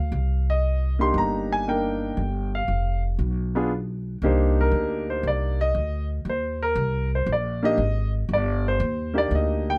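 A warm grand piano carries the melody up front in this moody, smoky jazz fragment, sounding natural and close across its full ten seconds. Beside it, a pizzicato upright bass on gut strings gives a woody, thumpy low line, also placed up front in the mix. The pair swing their eighth notes in 4/4, with the harmony moving from Cm7 to G7 and back to Cm7. At 4.2 s the music passes into a new section where the piano takes a solo, running to the cut at 9.8 s. Close, detailed microphones and a nearly dry room make the performance feel intimate, as if heard from beside the instruments.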